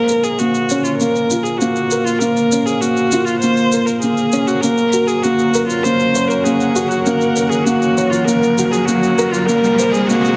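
A layered electronic shaker sets a straight 4/4 pulse at 99 BPM from 0.1 s in this hypnotic, melancholic piano and strings electronica excerpt in Bb minor, with a barely audible round sine sub bass underneath. An intimate felt-muted upright piano riff sits up front with audible action noise, while a nasal, bowed solo viola carries the melody with vibrato over a lush, detuned sawtooth pad with chorus that moves through Bbmadd9, Gb and Fsus4, as a filter sweep on an analog synth pad runs throughout. The passage builds throughout, a background riser enters at 6.9 s, and a wet scoring-stage reverb lends a spacious digital ambience.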